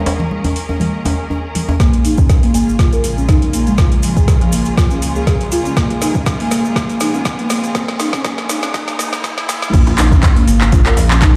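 Afro house at 121 BPM in Bb minor with a spiritual, hypnotic feel, this excerpt opens on clear, pumping symphonic strings with close djembe and thick-skinned congas, then at 1.8 s an up-front overdriven electronic kick, a round analog bass, a woody soft-mallet marimba with tape echo and a filter sweep, and a grainy background cabasa join the overdriven afro-pop kit with its metallic hats and woody snare for a drum-fill build-up, lifted by a background riser from 5.6 s until the drop at 9.7 s, where the djembe returns.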